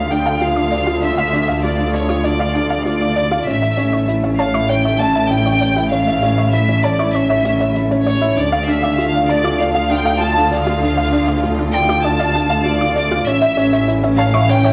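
A dark, woody upright piano leads this hypnotic, intimate piece of piano and strings electronica, playing a mellow, slightly detuned riff at 98 BPM in D harmonic minor, with the harmony moving between Dm and A. Above it, a clear chamber violin section carries the melody, bowed with vibrato and focused in tone, sitting up front yet distant, softened by a low-pass filter and a plate reverb. In the background, a lush symphonic string section holds sustained chords with a soft attack and expressive portamento, while a warbling, lo-fi sawtooth pluck with a noise layer spins evolving arpeggios through chorus and tape echo, a filter sweep on it driving a build-up across the whole passage. A bright, bowed double bass section anchors the low end with tube saturation, and a very quiet brushed hi-hat with a rolled-off top joins at 0.1 s. The cassette-tape character, a small, reverberant room and the home-recorded sound give this cut from a longer piece a dusty, close intimacy.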